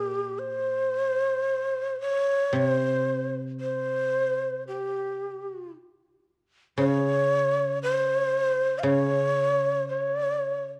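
A breathy, mellow end-blown bamboo shakuhachi carries a tongued, vibrato-tinged melody up front, over a dry, woody koto accompaniment plucked with fingerpicks, in this austere and calm piece of Japanese chamber music, cut from a longer work, moving in a free rubato around 57 BPM through a recital hall's moderate reverb on worn, warbling cassette tape with wavering pitch, until the shakuhachi stops at 10.6 seconds and the koto at 10.8 seconds.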